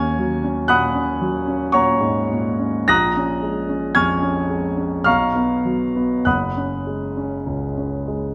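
In a rubato 3/4 at a slow 48-60 BPM, a solo concert grand piano drifts through a serene, dreamy impressionist classical passage, cut from a longer piece. The piano sits up front with a warm, open tone, deep bass and long sustain, spanning F#1 to A#6 as the harmony moves from D#m7 to A#m7, then B5 and F#sus2. A wet recital hall reverb of 1.4 seconds surrounds the playing across its 8.3 seconds.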